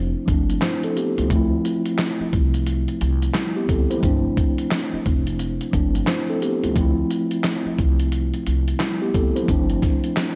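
Boom-bap hip-hop at 88 BPM in 4/4, this moody, gritty fragment of a longer piece sits in D dorian with a lazy 16th-note swing. A mellow tine electric piano carries the accompaniment up front, its clean tone coming through built-in speakers and then roughened by cassette tape and filtering as it moves between G7sus4 and Dm9. An upright bass, played pizzicato on steel strings, gives a woody low end that tube saturation thickens, and it drops out at 9.7 seconds. From 0.3 seconds a dusty, sampler-style soul kit pushes forward with a thumpy kick, a medium-tuned snare, hi-hat and handclaps, compressed and tape-softened and re-recorded in a large room. The overall mix is dry and hardware-rough, with vinyl crackle running underneath.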